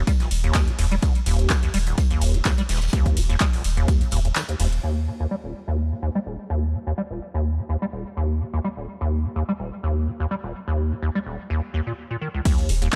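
A swung 4/4 groove at 126 BPM drives this raw, playful acid house excerpt in Eb major, opening on a drop where an overdriven, punchy electronic kick sits up front with a booming analog drum machine's metallic hats, handclaps, crash and ride, a very quiet soft-mallet kit adding fat snare, hi-hat and tambourine, and a round sine sub bass pumping underneath. A squelchy, resonant square-wave acid bass riff with filter sweeps, tube saturation, subtle chorus and cassette-tape grit runs throughout, carrying the track alone from about 4.8 seconds until the drums return at 12.5 seconds. The dry, gritty hardware sound is set in a small room ambience.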